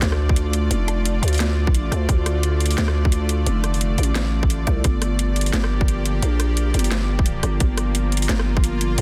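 A very quiet electronic impact opens this heavy, cinematic excerpt of half-time drum and bass at 174 BPM in D minor, alongside a string-like drone, a growling bass and an overdriven kit with a cracking snare and bright hats. The drone holds sustained chords, moving from Dm to Gm7 at 4.8 seconds, its tense, nasal sawtooth tone carrying vibrato, a noise layer, built-in reverb and sidechain pumping that lets it breathe under the beat. Underneath, the 808-style bass sits up front with a buzzy, decaying sine growl and a fast attack. A tight, overdriven electronic kick enters at 0.3 seconds and stays prominent in the mix, while the layered, produced drums carry a swung sixteenth-note feel with rim clicks among the snare and hats. The sound is set in a digital ambience and delivered as a dense, heavily limited modern master.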